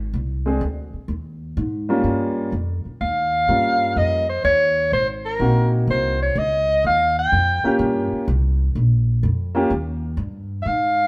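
Small-group swing and bop jazz in a playful, swinging mood, in which a woody, thumpy pizzicato upright bass opens at 0.0 s, a warm concert grand piano with deep bass adds accompaniment from 0.5 s, and a mellow soprano saxophone with vibrato takes the melody from 3.0 s, the band playing live together in one room with moderate stone-room reverb in this brief excerpt.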